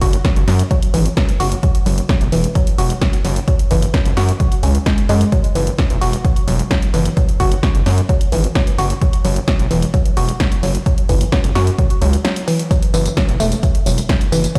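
From the first beat, this intense, industrial peak-time techno cut drives along at 130 BPM in a straight 4/4, with a punchy, tape-warm electronic kick and a gritty, saturated sawtooth synth bass sitting up front over an F#5 chord, tuned to A4 = 441 Hz. A woody, wave-folded pluck riff with a mellow filter sweep, chorus, tube saturation and tape echo pumps against the sidechain, as do the bass and the analog drum machine's hi-hats and percussion, which play alongside its snare. A short break arrives at 12.2 s, and the whole piece rings out through the stone reverb of a bare room on a big sound system.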